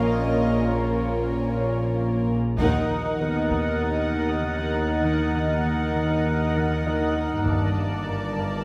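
Uneven beats in 4/4 at 97 BPM carry this eerie, mysterious suspense-score excerpt in Eb harmonic minor, where soft-attack, sul tasto violin sections float a pure melody and a second line over a rich viola section, a distant cello section and a dark, very quiet double bass section, while a thumb-plucked, ringing concert harp repeats a riff and a mellow, boxy grand piano adds faint texture. A resonant sawtooth analog drone with chorus and a bubbling texture of random filter steps, with chorus and its own reverb, hold sustained tones throughout. At 2.6 seconds, as the harmony moves from A#m to Ebm, a hard-stick taiko ensemble enters with an accent and an intimate chamber violin section with light vibrato hovers high until 7.1 seconds, all set in a wet scoring-stage reverb.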